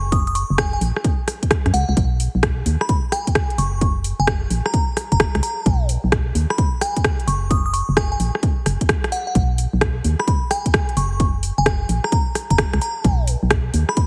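A hollow, organ-like FM bass with tube saturation sits up front in this soulful, bouncy two-step UK garage cut, its dark, percussive notes decaying beneath a glassy, crystalline synth bell melody treated with chorus and digital delay. A punchy electronic kick and a house kit of metallic hi-hats and rim clicks, both tape-warm and set in a small room, carry a swung 16th-note groove from 0.1 seconds to the end at 14.1 seconds. The excerpt has a heavily compressed, radio-like sound with vinyl crackle and light reverb.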